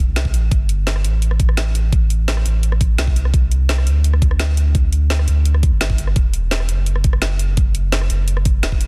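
A round, sine-like sub bass sits up front from the start, deep and sustained between E1 and D2, before an overdriven, knocking electronic kick and a layered kit of woody snare, rim click and bright hi-hats join within 0.3 seconds, setting a dreamy, rolling liquid drum and bass groove at 170 BPM in E minor with a dry, dense, heavily limited modern master.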